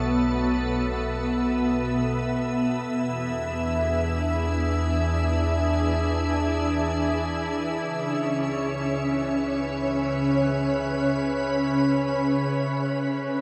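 Warm and weightless, this free-time ambient excerpt, cut from a longer piece, drifts on a soft, organ-like pad that holds sustained chords from B7sus4 through E7 and C#m7 to a closing D5 at 12.9 seconds. The pad sits bright and up front, pure and calm, with slow attacks, long releases, ensemble chorus and its own built-in reverb. Beneath it a round, deep analog bass sustains dark low notes throughout, and the recording is bathed in a lush shimmer reverb with a 9.3-second tail.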